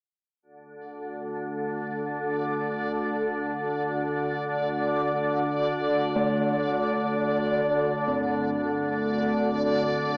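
Opening on a D5 chord at 0.4 seconds, this desolate, ominous dark ambient drone fragment in free time, tuned to A4 = 438 Hz, sets an up-front, calm, detuned organ-like sine drone with ensemble chorus from D2 to D3 beneath a reversed, bright, granular swelling texture that enters at 2.1 seconds and fades in gradually, before a metallic bronze singing bowl struck with a suede striker rings meditative, slowly beating arpeggios through tape echo from 6.2 seconds, all heard through a narrow telephone tone and a huge, wet reverb with a 9.2-second decay.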